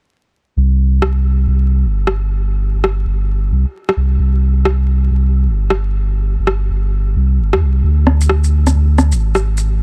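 Dry, densely limited and dusted with vinyl crackle, this nocturnal, ghostly future garage fragment at 132 BPM sets a round, sine-like sub bass up front from 0.6 seconds, joined at 1.0 seconds by a layered, overdriven electronic rim click and shaker that sit close and forward with a 63% swing on the 16ths.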